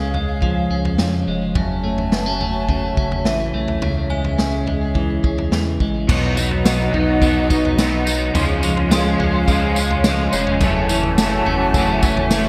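Dream pop in C# minor at 106 BPM, this ethereal, melancholic excerpt moves in a straight 4/4 through a moderate, lush hall with a bright 1980s-style digital sheen. A clean, picked electric guitar plays arpeggios up front, coloured by subtle chorus and delay, while a mellow large flute ensemble holds airy, expressive chords with vibrato. Beneath them, a round analog bass gives a deep, dark, sustained foundation. A vintage drum kit with a punchy kick, medium-tuned snare, tambourine, toms, crash and dark cymbals carries gated reverb. A very quiet FM synth chime adds inharmonic, ringing texture with phaser until 10.9 s. At 6.1 s a second electric guitar joins, twangy and slightly broken-up, with harmonic tremolo and ensemble chorus, as the chords move from B through C# to F#m7.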